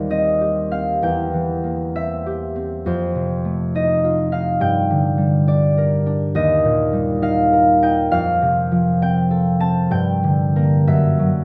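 Closely miked with light reverb, this serene, dreamy classical fragment, cut from a longer piece, features a solo concert harp played up front with a warm, ringing, thumb-plucked tone spanning Eb2 to A5, drifting in a rubato 6/8 at about 68 BPM through chords such as Cm/Eb, F7, Gm and Eb before reaching a Gb7 at 10.9 seconds.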